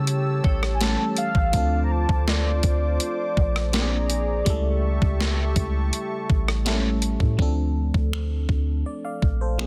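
A gated 80s digital drum machine, with a thumpy kick, hi-hat, finger snaps, rim clicks and a soft-clipped gated-reverb snare, drives this moody, sensual contemporary R&B excerpt at 82 BPM in D minor, over a deep, round 808-style bass, a glassy FM electric piano with chorus and phaser, a dark, detuned analog pad with sidechain pumping that drops out at 7.4 seconds, a mellow horn-like sawtooth synth lead with vibrato carrying the melody from 0.7 to 6.7 seconds, and a very quiet crystalline synth bell, in a dense, heavily limited master with little reverb.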